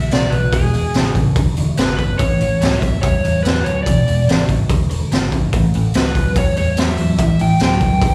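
Blues rock in a power-trio, southern rock vein, this short cut from a longer piece feels raunchy and driving, with a straight 4/4 pulse that shifts between E7 and A7. An overdriven slide guitar, played with fingerpicks and carrying a slapback echo, sings the melody high above the band. Beneath it, a double-tracked, overdriven semi-hollow guitar grinds out a low riff through phaser and slapback echo, its hollow-body tone warm. A vintage foam-muted bass, dark, round and punchy, anchors the bottom, while a raw garage drum kit enters at 0.1 seconds with a boomy kick, medium-tuned snare and hi-hat, sounding saturated and gritty with a rolled-off top, placed up front. The whole thing comes across as a live gig heard through the venue's PA, wrapped in club reverb.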